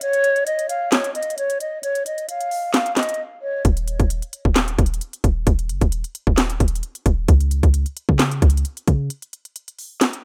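Brooding and melancholic, this short trap excerpt cut from a longer piece moves at 132 BPM in 4/4 with a half-time feel. A breathy, hollow concert flute carries the melody between Db5 and F5 for the first 3.6 seconds, sitting up front and close-miked with vibrato and tongued notes, softened by a low-pass filter and trailed by digital delay. An electronic trap kit runs through the whole 10.2 seconds with a hard-clipped kick, sharp snare, crisp hi-hats and handclaps, placed prominently in the mix. At 3.6 seconds a clean, sine-like 808 bass comes in, deep and boomy with a fast attack and dark decay, ranging from Eb1 to Db3 until it stops at 9.1 seconds. The sound is dry with little reverb, in the manner of a rough home demo.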